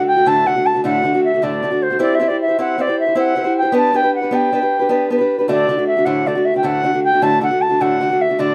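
A moderate studio reverb gives this short cut from a longer piece a clear, roomy sound, with both instruments sitting up front. It is a rollicking, bright Celtic folk slip jig in 9/8, moving with a straight feel. A reedy baroque flute carries the melody from start to finish, its wooden tone pure and touched with vibrato and a soft attack. Beneath it, a fingerpicked acoustic archtop guitar supplies warm accompaniment across its full span, from deep bass notes up into the flute's register. The harmony steps from D to C, then to G over B at 3.7 seconds, before settling back on D at 5.5 seconds.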